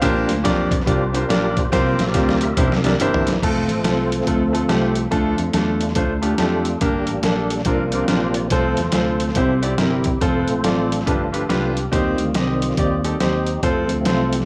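A brilliant, up-front concert grand piano drives this jubilant, soulful uptempo gospel excerpt in F major at 141 BPM with a swung feel, backed by a fat, lightly overdriven tonewheel organ with key click, chorus vibrato and slow rotary sitting in the background, a punchy fingered electric bass, and a compressed, pitched-down, muffled lo-fi sampler-style drum kit with a thumpy kick and overdrive that plays a fill from 1.7 to 3.4 seconds, all set in a lush hall reverb.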